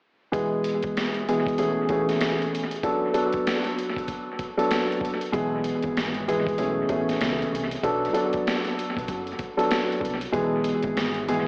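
Tough and moody, this boom-bap hip-hop fragment from a longer piece rides a swung 96 BPM groove, with an up-front, mellow baby grand piano, its action noise audible through cassette-tape coloring and dub echo, cycling E/B, Amaj7/B and Bm7 over gritty, pitched-down sampler drums with a thumpy kick and high-tuned snare, while a round fingered electric bass slips in at 5.3 s in the background, all set in an echo-chamber reverb with vinyl crackle and an AM-radio tint.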